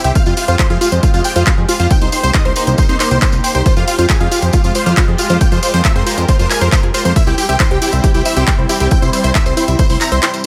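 A huge, euphoric supersaw lead carries the melody through this bittersweet, soaring slice of uplifting trance in F harmonic minor at 137 BPM, its airy, detuned sawtooth body pumping against the sidechain and trailing tape echo. A punchy supersaw stab plays a very quiet second line above it, while a lush unison pad with a slow attack and long release holds sustained chords through chorus and phaser, shifting from Fmadd9 to Cm7 and back before landing on C at 7.2 seconds. In the background a bright, wave-folded unison pluck spins arpeggios with a moving notch and its own tape echo. Underneath, a fat, saturated analog bass sits up front with a filter sweep. An overdriven, layered dance kit of handclaps and hi-hat runs from the start, plus a jingly, vintage tambourine tucked behind, and the dry, punchy electronic kick joins at 0.2 seconds, all set in a digital ambience in this short cut from a longer piece.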